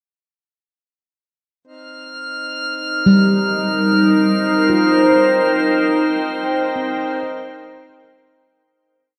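This peaceful, serene ambient piece opens at 1.7 s with a reedy pedal harmonium fading in, its breathing, mid-forward drone sitting in the background. Moments later a glassy texture of drifting overtones holds a single bright high note, coloured by chorus and its own reverb. From 3.0 s an evolving wavetable pad comes up front with mellow, warbling, vintage sine tones, slowly shifting chords around a rootless Abmaj7. Alongside it, a handpan of nitrided steel plays dark, ringing, meditative arpeggios with sharp finger strokes through delay, in five slow loops of unequal length drifting against each other. At a relaxed 70 BPM in Ab major, the whole piece sits in a vast, echoing space with a huge reverb, and a fade-out begins at 5.1 s.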